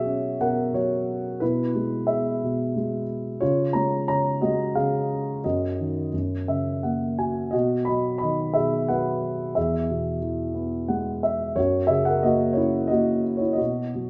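Classical solo piano in a lyrical, hopeful mood, this short passage cut from a longer piece moves in an unhurried triple metre with a flexible, rubato feel. A dark concert grand carries everything alone, its mellow, somewhat boxy tone sitting up front with deep bass. Brief fills appear at 6.1 and 10.6 seconds. A moderate recital-hall reverb lends the sound a sense of space.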